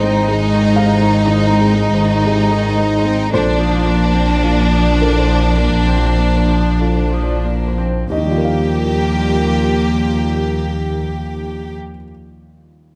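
A rubato 4/4 pulse slows over the first 8.1 seconds in this hopeful, intimate neoclassical fragment, with harmony moving from Ab to Bbadd9 and settling on Ebadd9. A close chamber violin section carries the vibrato-touched melody up front, joined by a bowed double bass with a dark, smooth top, while a sul tasto cello sings a soft second line and a floating, pure viola accompanies in the background. A mellow, felt-muted upright piano with audible action noise and a boxy tone sits in the background alongside a very quiet, detuned analog pad with chorus and phaser, all in light reverb, and the piano rings on alone until 13.0 seconds.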